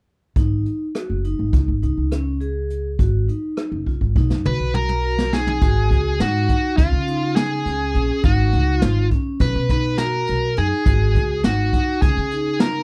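Progressive instrumental band music in 9/8 at 206 BPM (eighths), driving and intricate in G# dorian, this excerpt opens at 0.4 s with hard-mallet vibraphone arpeggios ringing metallic in a boxy small room, a woody, bright pizzicato upright bass up front, and a distant, roomy brush kit with a boomy kick and rolled-off top. A drum fill from 3.9 s leads toward the second section, and at 4.5 s a smooth, overdriven, picked electric lead guitar enters up front carrying the melody over a dry mix that circles between G#5, C#5 and B chords.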